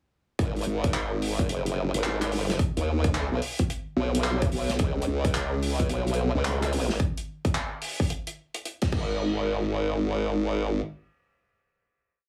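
Dry, heavily compressed and radio-like with small-room ambience, this short, funky, swaggering glitch hop piece drops in at 0.4 seconds with a punchy, overdriven electronic kick up front, a damped 70s drum kit of fat snare, handclaps, hi-hat and dark crash cymbal playing a swung beat with edits, and a sustained, chorused formant-sweep wobble bass whose modulated phrases shift their wobble speed, before the drums stop at 9.1 seconds and the bass carries the final hit alone until 10.8 seconds.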